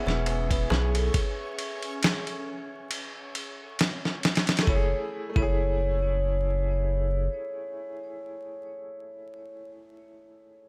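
Brooding and cinematic, this slow trip hop excerpt at 68 BPM in F# minor pairs a ringing, metallic vibraphone melody with tape echo and a brilliant, woody upright piano with tremolo over a deep, round dub sub bass, a gritty, thumpy sampler-style drum kit that stops at 5.6 seconds, a very quiet clay-shell darbuka, a delicate, tinkling music box, and a reversed, dreamy granular swell in the background, all beneath a layer of vinyl crackle.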